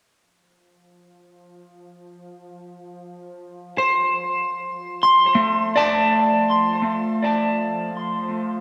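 Floating in free time, this serene, luminous ambient fragment opens on a string-like, tense bowed-like drone on F3 that fades in from 0.9 seconds with a slow attack, bright tone and vibrato, joined at 3.8 seconds by an up-front, slightly broken-up electric guitar picking arpeggios from A3 to C6 through lush chorus, analog delay and shimmer reverb, over a Dm7 chord that gives way to silence near the end, in an echo-heavy mix with a wet spring reverb and the soft patina of cassette tape.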